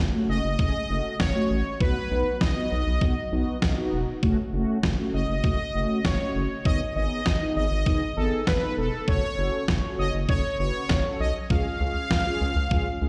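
A detuned 8-bit drum machine sits up front in this nocturnal, melancholic synth-pop excerpt, its thumpy kick and medium-tuned snare carrying a tape-warm, sampler-style character from being re-recorded in a small room, entering at 0.6 seconds in a straight four-beat feel. Beneath it, a round analog bass blends square and sine tones into a deep, dark, sustained foundation from the very start. A mellow synth brass part fills in the harmony with full-bodied, detuned sawtooth chords, colored by chorus and shaped by a filter sweep and moving notch. Over the top, a bold, fat analog synth brass lead carries the melody from 0.3 seconds, bright and up front, with chorus and a digital delay trailing its sustained notes. The chords move from F#m through B, back to F#m, then G#m, F#m and C#, all set in a lush hall reverb that sounds like a big sound system playing in a bare room.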